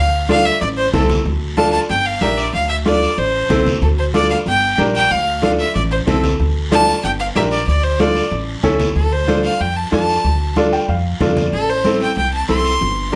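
Driving and danceable, this cumbia excerpt in D minor moves at 187 BPM, with a biting, nasal fiddle carrying the melody up front over a thumpy, woody pizzicato upright bass and a worn, slightly detuned upright piano whose action noise is audible. Bright, thin-skinned congas and a raspy, distant guiro fill out the percussion, all set in a wet studio reverb heard from further back in the room, with some lossy compression artefacts. At 9.0 seconds the fiddle takes a solo, and the piano adds a brief fill at 10.6 seconds as the harmony settles from D minor to A minor.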